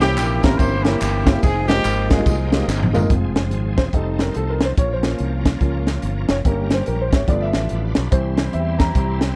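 Uptempo gospel in F minor at 143 BPM with a swung, fervent and soulful feel, where a tight, mellow horn section carries the melody over woody upright piano, a bright tonewheel organ with slow rotary speaker and key click in the background, a growly fingered electric bass, a gritty, punchy drum kit, and distant tambourine and handclaps until a drum fill at 2.7 seconds leads to an upright piano solo from 3.1 seconds, backed by veiled, muted strings.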